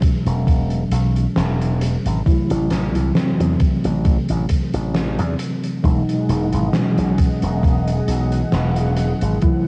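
Vaporwave with a woozy, dreamy swing, this short cut from a longer piece sets a mellow tine electric piano, coloured by subtle chorus, cassette tape and tape echo, over a thumpy, up-front electronic kick and an oversized low-tuned kit whose gritty, saturated hi-hat and fat snare sit lower in the mix, while a growly, punchy slap bass with an envelope filter rumbles beneath and a lush, airy unison pad with chorus and phaser drifts in at 6.1 seconds, the whole scene set in light reverb on a home cassette recording.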